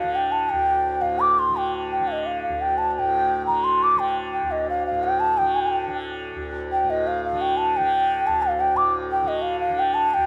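A moderate concert-hall reverb gives this short fragment of Indian classical music a solemn, introspective air, with the airy, hollow bamboo bansuri placed up front as it carries the melody in raga Bhairavi over a 7/4 cycle. Its crisp attack and vibrato stand out, while a softly plucked tanpura sits lower in the mix, its buzzing, shimmering drone running throughout the 10.3 seconds. The tempo gradually speeds up across the passage.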